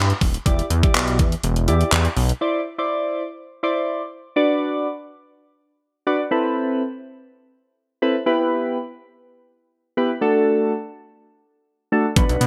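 Dance-pop at 123 BPM with a confident, energetic drive and a bright 1980s-style digital sheen, opening with a fat, detuned sawtooth analog bass and an overdriven, up-front electronic drum kit of knocking kick, hi-hat and handclaps bathed in gated reverb. Around 2.4 seconds both drop out for a break, leaving the soft, round electric-piano-like synth keys, coloured by chorus, phaser, ring modulation and sidechain pumping, to carry chords moving from Em7 and Cadd9 through Bm, Amadd9, Em and D. The bass and drums return at 12.2 seconds as this excerpt of a longer piece closes in light digital ambience.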